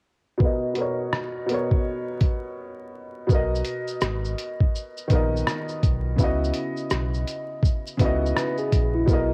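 Lo-fi hip hop at 83 BPM in a swung 4/4, nostalgic and reflective, cut from a longer piece and coloured by a cassette home-recording feel with vinyl crackle. A woody, vintage upright piano sits up front beside a muffled, compressed sampler-style kit of thumpy kick, hi-hat, rim click and shaker, with a filter sweep on the piano through the opening before a brief break at 2.6 seconds. A deep sine sub bass with octave enters at 3.3 seconds, and a mellow, clean tine electric piano, heard as if through built-in speakers, adds a second line at 8.4 seconds over harmony moving from Bmaj7 to C#m11.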